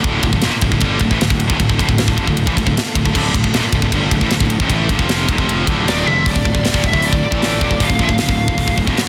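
Heavy metal in D minor at 155 BPM, this aggressive, dark excerpt drives two distorted high-gain rhythm guitars, one of them scooped, through a riff on a Dm chord, set in the background behind a tight metal drum kit that sits up front with a tight kick and a drum fill at 6.1 seconds. A growly, fuzz-overdriven picked bass anchors the low end, while a very quiet, lush symphonic string section holds bowed chords with vibrato and a soft attack underneath. At 5.9 seconds a bright high-gain lead guitar enters with a brief melody through digital delay, all in a dense, heavily limited modern master with little reverb.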